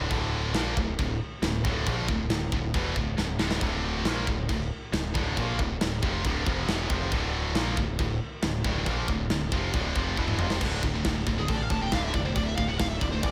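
Tight metal drums sit up front, saturated and gritty with bright cymbals, a medium-tuned snare and a firm kick, driving this relentless, aggressive heavy metal excerpt in a straight 4/4. Two high-gain distorted guitars grind out the riff across the low register, one scooped and set further back, while a growling picked electric bass, overdriven and direct, holds down the bottom beneath them. Drum fills land at 3.2 and again at 10.2 seconds, and the harmony shifts from a D minor chord to a bare power chord at 10.6 seconds as a new section opens. A high-gain lead guitar bursts in at 11.4 seconds with a searing solo line in a higher range. Lush hall reverb mixed with a small room gives the whole track a big arena sound, and the recording is cut from a longer piece.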